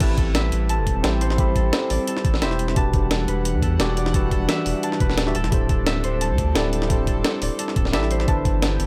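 A lush, rolling stretch of liquid drum and bass opens with a worn, slightly out-of-tune tine electric piano and ringing acoustic harp arpeggios, both carrying digital delay, beside a soft, breathy pad with chorus, all moving through Am9, Em9, D7sus4 and G6. Up front, a deep, thick sub bass sits warm with tube saturation, while a gritty, pitched-up breakbeat kit with a high-tuned snare, hi-hat and crash rides alongside a thumpy, compressed electronic kick that drops out at 8.5 seconds. Light reverb gives the mix a gentle sense of space.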